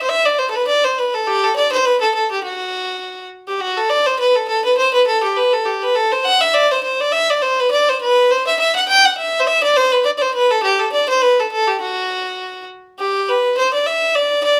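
Recorded live in one room with a moderate studio reverb, this cheerful, lively Celtic folk excerpt in D mixolydian has a lone fiddle playing up front at a brisk 205 BPM with a swung eighth-note feel, its airy, nasal, earthy bowed tone carrying the tune before it moves into a new strain at 13.0 seconds.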